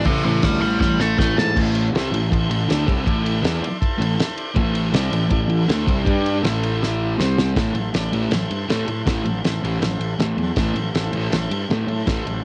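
A raw home cassette recording with light reverb opens this gritty garage rock excerpt in A minor at 160 BPM in a straight 4/4, where a dark, octave-fuzz lead guitar sits up front with a short melody that plays only until 1.6 seconds. Underneath, a double-tracked, thick fuzz guitar drives the riff, a fuzz picked electric bass sits forward with an overdriven growl, and a cloth-damped, thuddy drum kit with a fat snare, tight kick and dark cymbals adds fills around 0.8 and 6.8 seconds. A buzzy, vintage combo organ with light vibrato holds sustained chords in the background and slips in a fill at 3.4 seconds, while the harmony rests mostly on Am with brief turns to G5 and C5.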